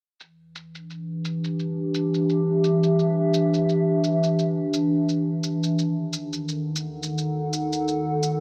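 Intimate and wistful, this swung folktronica piece places a warbling, detuned tape-like pad up front, holding dark, nostalgic chords with a chorus-tinged shimmer from 0.9 seconds and moving from Em7 to D#dim at 5.8 seconds, over a muffled electronic shaker re-recorded in a small room, set in a dry, close 1970s-style studio sound.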